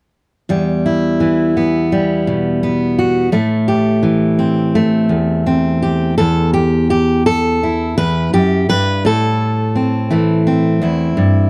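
A fingerpicked steel-string dreadnought acoustic guitar carries this brief folk excerpt alone, sitting up front in the mix from 0.5 seconds until the piece cuts away at 11.5 seconds. The mood is haunting and wistful, set in a straight, unhurried 4/4 with the guitar ranging from its low E2 up to B4. The harmony moves from Em to Am, then shifts at 6.2 seconds to a second section that colours the opening chord as Emadd9 before returning to Am. The production leans dark, with the guitar's own tone coming across as warm. A moderate studio ambience surrounds the instrument, giving it a modest sense of room as this fragment of a longer piece unfolds.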